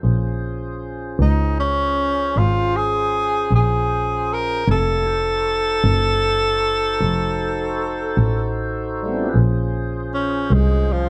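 Slow blues in 12/8 with a straight feel, this mournful, smoky excerpt is cut from a longer piece. A fat, clean tonewheel organ holds sustained chords through a slow rotary speaker. Beneath it, a single bowed double bass plays the bass line up front, its dark tone shaped by vibrato, portamento and a smooth top. The tenor saxophone enters at 1.2 seconds with a warm, roomy jazz voice and light vibrato, then takes a solo from 9.3 seconds. The harmony moves from Bbm9 to F7b9 and back to Bbm9, and the dark production wraps the trio in light reverb.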